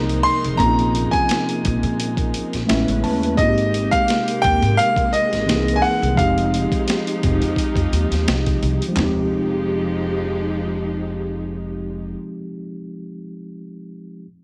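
A small room's light reverb surrounds this smooth, sultry neo-soul and R&B excerpt, at 86 BPM in F minor with a gently swung sixteenth feel. Up front, a clear, intimate grand piano carries the melody high in its range, its long sustain and audible action noise lending it a natural presence until it drops out at 8.2 s. Beneath it, a mellow, clean tine electric piano supplies the accompaniment, adds a fill at 2.3 s, and outlasts the other parts, carrying on to 14.3 s. A lush, bowed studio string section holds sustained chords with vibrato, while a woody pizzicato upright bass on steel strings anchors the low end. A gritty, compressed, pitched-down boom bap drum kit with a thumpy kick, high-tuned snare, handclaps, hi-hat and toms drives the groove over harmony that moves from Bb9sus4 through Amaj9 and Abmaj9 to C7alt and Fm9.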